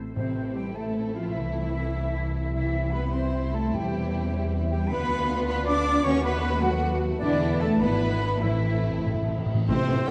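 Up-front double basses and a close cello section anchor this urgent, restless fragment of a dramatic romantic classical movement in 6/8 with rubato, as lush violins carry the melody over a very quiet studio violin line, airy flutes add a crisp second line, smooth violas and a ringing harp in the background supply accompaniment and arpeggios, and hard-mallet timpani with a fill plus dark cymbals and tam-tam lead to a brief accent at 9.7 s where mellow horns, trombones, a bright trumpet and a punchy tuba join, before a soft clarinet touches the final moment at 10.1 s in a dark, reverberant hall.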